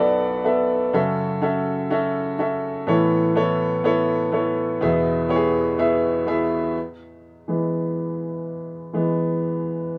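A warm baby grand piano opens this anthemic pop excerpt at 124 BPM with a light sixteenth-note swing, its open, up-front tone and long sustain carrying chords from Bm7 through F#m7 and Aadd9 to E, then continuing on its own into a new section at 6.8 seconds, all set in a moderate studio ambience captured live in one room.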